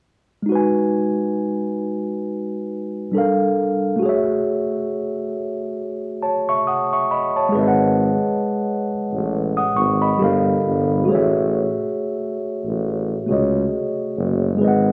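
A clean, low-pass-filtered tine electric piano opens this hazy, reflective lo-fi hip hop excerpt at 0.4 s, cycling through G#m7, Gm7 and F#m7/A in F# dorian at a swung, unhurried 68 BPM, until a breathy, up-front tuba enters at 7.6 s to carry the low end with soft-attacked, scooped notes and jazzy vibrato, all softened by a light studio reverb.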